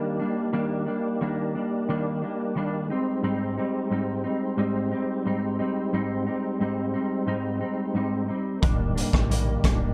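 A mellow, round tonewheel organ with percussive attack, chorus vibrato, a stopped rotary speaker and a cassette-tape tint sits under a clean, compressed semi-hollow electric guitar, up front and fingered, with ensemble chorus and warbly pitch drift, both bathed in plate reverb. This nostalgic, laid-back indie and bedroom pop fragment moves at 89 BPM in a straight 4/4, drifting from Ebmaj7 to Abmaj7 in a dark production. At 8.6 seconds the chord returns to Ebmaj7 as a deep sine-and-triangle sub bass with octave and a gritty, saturated garage drum kit enter, the kit's boomy kick, hi-hat and rim click pumping in a small room.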